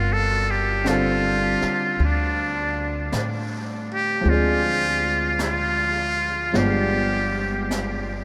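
Jazz ballad, wistful and melancholic, at a slow 53 BPM in swung 4/4: a buzzy, thin metal-muted trumpet with light vibrato and a soft attack carries the melody up front through a delay, over woody pizzicato upright bass, a polished grand piano dressed in lush chorus from 0.8 s, and a brushed kit with a high-tuned snare tucked in the background from 0.9 s, as the harmony moves from G to Dm7b5 and G7b9 inside a dreamy mix soaked in huge ambient reverb.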